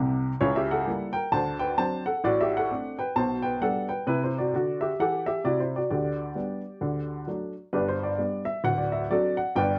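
A warm, woody upright piano plays alone from the first moment, a slightly detuned instrument with short sustain set up front in an exuberant, playful stride jazz excerpt with a swinging 4/4 lilt. Its harmony moves from a C#dim7 through D7, G/B and Am/C before settling on G and returning to D7 near 8.6 seconds, spanning low bass notes to the upper treble. The sound carries a moderate club reverb and the worn, warbling pitch drift of old cassette tape, as the piece is cut from a longer performance.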